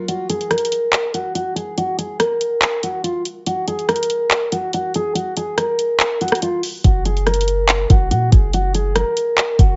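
Dreamy yet triumphant, this short cut from a longer hip hop and trap piece moves at 142 BPM in 4/4 with a half-time feel, set in F# major and tuned to A4 = 442 Hz. A picked steel-string acoustic guitar with a full-bodied jumbo tone carries the melody up front through a low-pass filter, staying within a narrow span from E#4 to A#4. The electronic trap kit plays handclaps, bright hats and rim clicks from the start, holding its knocking kick back until 6.8 seconds. At that point the harmony lands on F# and a deep, boomy 808-style bass enters, its sine tone layered with noise, its fast attack decaying into a mellow, warm low end that reaches down to F#1. The drums have a tape-warm, produced sheen, and a digital ambience surrounds the mix, with the top end rolled off above 7.7 kHz for a soft, hazy finish through 9.8 seconds.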